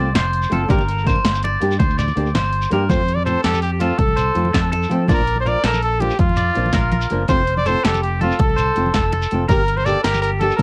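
A carefree 12/8 groove from a punchy analog drum machine's hi-hat, kick and snare, with damped, thick-skinned congas and a grainy shekere in the background, drives this highlife guitar band passage cut from a longer piece. A round fingered electric bass, a fingerpicked flamenco guitar with audible finger squeak, and twangy, slightly broken-up electric guitar arpeggios steeped in plate reverb and tape echo fill out the band, and at 2.9 s a bright, close-miked trumpet with vibrato joins them to take the lead up front. The cassette home recording lends the guitars and trumpet a tape-worn sheen within a light reverb.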